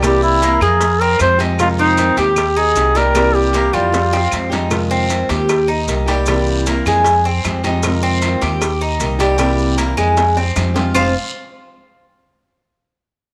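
A moderate echo-chamber reverb gives this sultry, danceable excerpt of Cuban son and guajira a studio sheen, with a vintage duduk singing the melody up front with vibrato in a folk style until it falls away at 4.5 seconds. Beneath it, a metallic, double-strung tres picks arpeggios and a woody, growly pizzicato upright bass sits prominently, while a fingerpicked flamenco guitar adds warm accompaniment over a circling minor progression. In the background, tight, high-tuned cowbell and bongos, compressed claves and grainy maracas keep the dance pulse going, joined by a raspy guiro.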